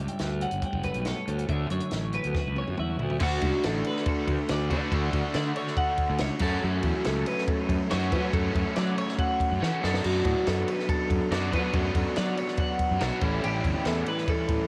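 This home cassette recording sounds dry and close, with a faint tape grain over most of the parts. It is a wistful yet bright fragment of math rock and midwest emo in D major, moving at a straight 141 BPM in 4/4 and cut from a longer piece. A clean, twangy twelve-string electric guitar opens with spring-reverbed accompaniment over Gmaj9#11 and Dmaj9 chords until 4.9 seconds, while a second compressed twelve-string picks arpeggios with tape echo from the background. Underneath, a round, fuzzed fingered bass and a compact cocktail kit with a punchy kick, a high-tuned snare and dark cymbals sit up front, and the kit plays a fill at 2.4 seconds. At 3.2 seconds a double-tracked, overdriven electric guitar riff joins up front, carrying the music through Dmaj7, F#m, Bm9/F# and A9.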